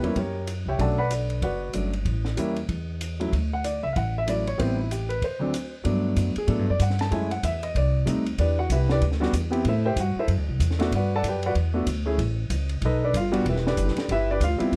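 Playful and swinging, this jazz piano trio excerpt moves at a brisk 190 BPM in 4/4, with the eighth notes lightly swung. The grand piano carries the melody up front with a warm, natural tone, ranging from deep in the bass clef up into its upper register. Beneath it, the pizzicato upright bass sits close and woody on steel strings, while a compact cocktail kit stays lower in the mix, its dark, smooth ride and hi-hat framing a high-tuned snare and a punchy kick in a small-room sound. The harmony opens in D major with colorful chords such as Bm7 and Dmaj9, pauses for a short break at 5.2 seconds, and then shifts to G major at 5.8 seconds, moving through Gmaj9, F#m9, Cm69 and a B7alt before settling on Em9. Light reverb and a dark, warm production give the trio an intimate, late-night glow.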